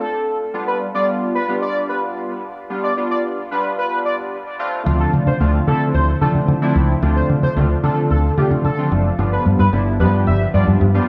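An echo-heavy, high-pass filtered mix with light digital reverb and a small-room ambience opens this summery, euphoric dance-pop passage, cut from a longer piece and tuned to A4 = 437 Hz. At 111 BPM in a straight 4/4, a glossy, retro chorused polysynth carries the accompaniment from the start, its detuned sawtooth and pulse-wave tones shimmering with pulse-width modulation and dub echo as a filter sweep drives the build-up. Above it, a bold octave-doubled lead sings the melody in a sustained, fast-attack voice that blends sawtooth and triangle with a metallic ring-modulation edge, coloured by chorus, phaser and dub echo. The drop lands at 4.9 seconds, where a deep dub fingered electric bass enters up front with a round, foam-muted, dark tone that anchors the low end. The harmony moves from G7 to Dm7 and back to G7, keeping the mood bright and buoyant.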